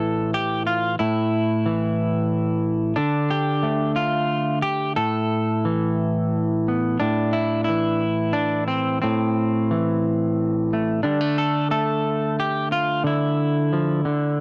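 Reflective and haunting, this is a short fragment of folk fingerstyle music played by a lone clean electric guitar from 0.0 to 14.4 seconds. The guitar moves freely in 6/8 with a rubato feel, spanning A2 to A4 in a fingered, twangy tone that is compressed and sits up front. The passage is stated twice, with the second pass beginning at 7.0 seconds, and the harmony drifts from A5 through Dm and Asus2 before returning to Am and Dm. A light reverb barely softens the guitar, which sits in a dry, close 1970s-style studio sound with a faint mains hum beneath it.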